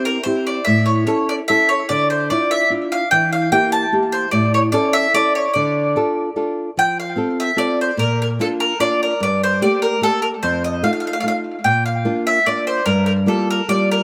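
A bright, woody mandolin with doubled strings carries the picked melody up front from the opening moment, touched by tape echo, while a small, warm nylon-string guitar fingerpicks the accompaniment close beside it. This passionate, romantic Italian folk serenade moves in a straight 3/4 at 147 BPM in D minor, tuned slightly low to A4 = 438 Hz, with chords such as Dmadd9 and Edim giving the opening phrase a yearning color. At 6.8 seconds the harmony shifts toward F, Bb and Gmadd9 for a second phrase, all captured by close, detailed microphones in light reverb, in a passage cut from a longer piece.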